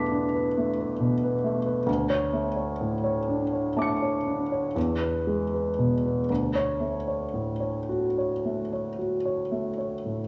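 Nocturnal and mysterious, this impressionist solo piano piece drifts at 36-46 BPM in dotted quarters through a rubato 9/8, moving from E7sus4 to D5, E and Dmaj7 across its 10.3 seconds, a passage cut from a longer work. The grand piano sits up front with a clear, intimate, polished tone and long sustain, spanning D2 to C#7, and its action noise stays audible. A wet recital hall reverb blends with a small room ambience around it.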